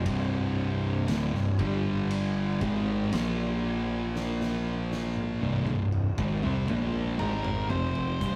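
Sludgy and brooding, this stoner and doom metal excerpt crawls at 59 BPM in C minor, with two thick fuzz guitars grinding out a distorted riff, one up front and one in the background, over a fuzz-laden electric bass and an oversized, low-tuned drum kit with a fat snare, punchy kick and dark cymbals set back in a pumping stone room. A very quiet, tense, string-like drone hangs above, detuned and vibrato-tinged, while the drums roll through a fill from 4.1 seconds. At 7.2 seconds a dark octave-fuzz lead guitar enters with a brief melody, all captured with the rough, tube-saturated character of a rehearsal-room recording.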